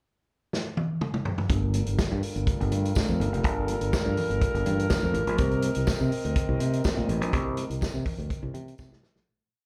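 Disco with a driving, sultry feel, captured live through a club PA with light reverb: a vintage drum kit opens with a fill at 0.5 seconds, then settles into a four-on-the-floor beat with sixteenth-note hats, its tight kick and rolled-off top sitting up front. At 1.5 seconds a growly fingered electric bass enters with a syncopated line and muted ghost notes, while a distant French horn section holds a classical-style sustained pad in plate reverb over Gm9 moving to Cm7. Very quiet, high-tuned congas slap on two with open tones on four, a jingly tambourine marks the backbeat in the background, and the whole piece fades out from 7.3 seconds under a closing drum fill.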